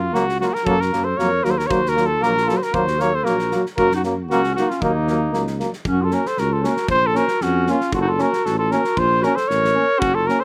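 A straight 2/4 pulse at 116 BPM drives this short, bittersweet and virtuosic Balkan brass band passage, cut from a longer piece and played in a dry space with little reverb. Up front, a warm cornet carries the melody with light vibrato and classical poise, while a mellow, close-miked tuba anchors the bass. A brilliant trombone adds accompaniment with vibrato and jazzy scooped notes, sounding distant and roomy, and a soft-toned euphonium with vibrato sits in the background beneath it. From the outset, a loose acoustic drum kit, with a medium-tuned snare and tight kick pumping in a small room, keeps the dance moving quietly underneath, and from 0.7 s a clarinet joins with a classical second line. The harmony rocks between Gb and Ebm before shifting at 5.8 s into a new section that alternates Gb with Bbm.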